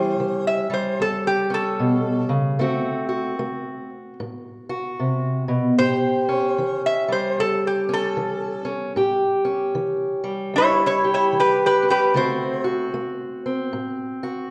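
A metallic, nasal lap resonator guitar, played slide with fingerpicks, carries the melody up front until 12.6 seconds in this swaggering, soulful acoustic country blues fragment at 75 BPM with a swung feel in A mixolydian, over a dark, woody, boxy fingerpicked parlour steel-string guitar on old strings moving between A7 and D7, all bathed in the lingering reverb of a church or concert hall.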